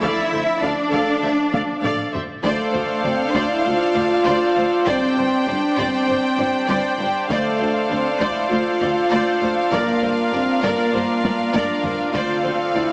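A straight 4/4 pulse at 99 BPM drives this heroic, dramatic cinematic orchestral cue in D minor, with a taiko ensemble struck with heavy sticks in a small room and drum fills around 1.5 and 11.2 seconds. Lush bowed violins carry a smooth vibrato melody over a second violin line, an intense viola accompaniment and a focused cello bass, these three sitting in the background. A distant double bass section anchors the low end while a prominent mellow French horn section holds sustained chords, joined at 2.5 seconds by a shimmering pipe organ celeste, while round, dry timpani strikes land from 7.3 seconds. A wet scoring-stage reverb surrounds the ensemble, but heavy compression gives it a small-speaker, radio-like sound in this fragment cut from a longer piece.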